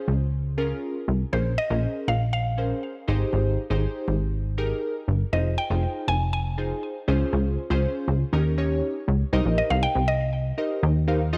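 Bittersweet yet confident, this straight 120 BPM dance-pop excerpt opens on glassy digital keys with a chorus sheen, joined almost at once by a punchy, funky analog bass whose wave-folded filter pluck sits up front. From 1.3 seconds a woody, round mallet-like synth pluck carries the melody through chorus and tape echo, over a progression that moves from Dbmaj7 through Bbm9, Abmaj7 and Fm7 back to Dbmaj7 and on to Eb7 before turning to Cm7 at 9.3 seconds, set in light reverb and digital ambience.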